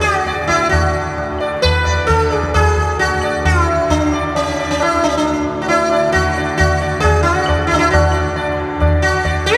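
Hindustani classical music with a meditative, devotional mood, cut from a longer piece, where a bright, buzzing sitar with shimmering sympathetic strings carries the melody up front over a softly plucked tanpura drone and low-tuned, ringing tabla, all heard through a lingering cathedral-like reverb as the pace gradually speeds up across the 9.6 seconds.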